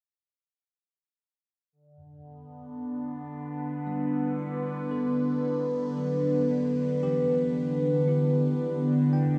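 Ambient music with a weightless, serene mood, moving in a gentle three-beat metre over a single Gmaj7 chord in this short passage cut from a longer piece. An evolving wavetable pad enters at 2.7 seconds with sustained chords, its sine-like tone morphing slowly with a soft attack and long release, bright and up front, colored by a phaser and its own reverb. At 3.9 seconds a bell-like tine electric piano fades in with clean, direct arpeggios, sitting quietly in the background under a tape echo. The whole recording is soaked in a huge ambient reverb with an 8.6-second tail. A cassette-tape character gives the sound a soft, worn patina.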